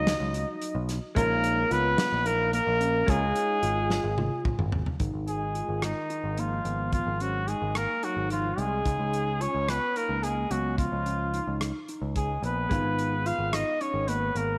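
A moderate echo-chamber reverb with a 1.7-second tail gives this short cut from a longer progressive instrumental a roomy studio sheen. The mood is tense and brooding, moving at 218 eighth-note beats per minute in a straight 7/8, in G# dorian with the tuning set at A4 = 439 Hz. Up front, a punchy, vintage-toned trumpet with light vibrato carries the melody in a pop style. Behind it, a clear, close-miked alto saxophone plays a second line with a classical bearing. A warm, direct electric bass, picked and amped, anchors the low end up front alongside an airy, polished country drum kit with a tight kick, working hi-hat, rim click, snare and toms, with a drum fill from 3.9 to 5.0 seconds. Further back, a mellow tine electric piano ripples through phased arpeggios, while a dark, compressed hollow-body jazz guitar adds clean, picked accompaniment, dropping out at 5.0 seconds and returning at 12.7 as the harmony passes from D#m7 and A#m7 through G#5 and C#9 to a closing G#m69.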